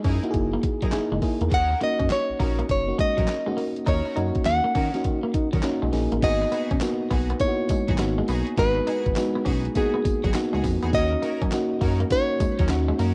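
A mellow FM electric piano with a round, chorused tone opens this short excerpt alongside a gritty, pitched-down sampler-style drum kit, a smooth synth bass and a twangy clean electric guitar riff bathed in lush chorus, setting up a confident, punchy new jack swing groove with a swung 16th-note feel. The drums sit up front with a thumpy kick, a medium-tuned snare, hi-hat, handclaps, tambourine and crash cymbal, while the dark, sustained synth bass carries a ring-modulated edge underneath. Bright bowed string stabs with vibrato join almost immediately, tucked low in the mix. At 1.5 seconds a fingerpicked nylon-string guitar takes the melody up front, full-bodied with audible finger squeaks and a touch of tape echo. The harmony moves from F#13 to D#m7, then shifts to G#m7 at 6.2 seconds as a second section begins, returning to D#m7 near the end. Light reverb and the sound of a home cassette recording give the whole piece a hazy, lo-fi character.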